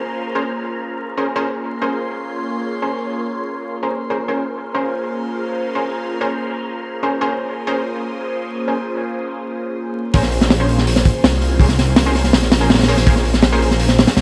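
A straight 4/4 drum and bass groove at 164 BPM in Bb minor opens on a Bbm9 chord, with a breathy, chorused and phased pad holding sustained chords beside a dark, wind-like tuned noise texture, while a bold, bright orchestra-hit-like synth stab punctuates the air through reverb and dub echo. After a short break at 9.4 seconds, the drop lands at 10.1 seconds, bringing in a thick, menacing detuned saw bass and a crunchy, gritty breakbeat kit with a punchy kick and high-tuned snare, placed up front. The mood is nostalgic yet frenetic, set in light studio reverb with vinyl crackle, in this fragment cut from a longer jungle piece.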